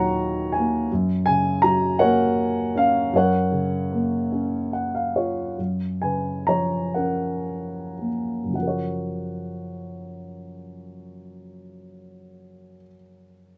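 A dark, mellow grand piano opens this short classical excerpt alone, setting a tender, peaceful mood in 6/8 played with free, breathing rubato. It begins on a minor-seventh colour before settling onto its home major chord, then blooms into a major-seventh harmony at 3.1 seconds as the pace gradually slows. A brief piano fill at 4.3 seconds leads into the next phrase, and the slowing continues until 8.5 seconds. The solo part spans from the deep bass register up into the upper treble, with a slightly boxy, up-front character. Close, detailed microphones and light reverb keep the intimate sound present, and the passage ends at 13.6 seconds as a fragment of a longer lyrical piece.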